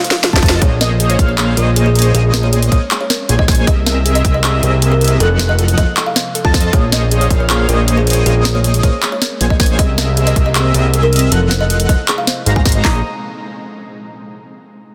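This emotional, lush future bass excerpt opens on a drum fill of bright hi-hats, handclaps and a sharp snare, while a woody, hollow kalimba carries the melody over a very quiet, ethereal pad and a soft, round pluck playing gentle arpeggios. From 0.3 seconds the half-time drop fills out: a fat, nasal analog bass with tube saturation and a hard-clipped kick sit up front, and a bold, full-bodied polysynth riff adds chorus and vintage 12-bit sampler grit. High above, a dreamy lead with vibrato traces soft arpeggios in the background. The kalimba, lead, polysynth and bass all pump against the sidechain, the kalimba also trails a delay, and both drum layers carry overdrive and a small room reverb. Harmonies cycle through Bbm11, C7alt and F7b9 before turning to Ab13 near the close, all inside a dense, heavily limited modern master.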